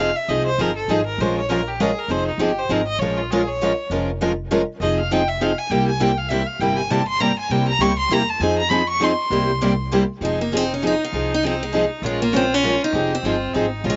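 Dry, outdoor sound with softened highs frames this bittersweet, swinging jazz manouche excerpt in F minor at 199 BPM in 3/4, where an airy, earthy violin with light vibrato and slapback echo solos up front until 10.2 seconds, over a boxy archtop guitar with finger squeak and its own slapback echo, a bright parlour steel-string guitar with fresh strings and a thumpy, woody pizzicato upright bass, before an up-front auditorium steel-string guitar takes the melody.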